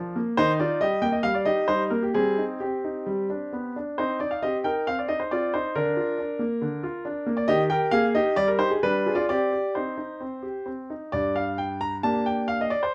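A clear, natural grand piano sits up front in a light reverb, giving this short excerpt from a longer classical-period sonatina an intimate, present sound. The piece is in C minor and 4/4, moving at roughly 126-140 BPM with a rubato feel that lends it a restless, serious mood. The solo piano covers a range from G2 to Bb5 and plays across the whole 12.9 seconds. The harmony opens on Eb and moves through Cm/G, G and Cm, then Bb/D and back to Eb. A richer Abmaj9#11/G leads into G7b9 before settling on Cm. At 11.1 seconds a new section begins on Gm, and the excerpt is cut off shortly after.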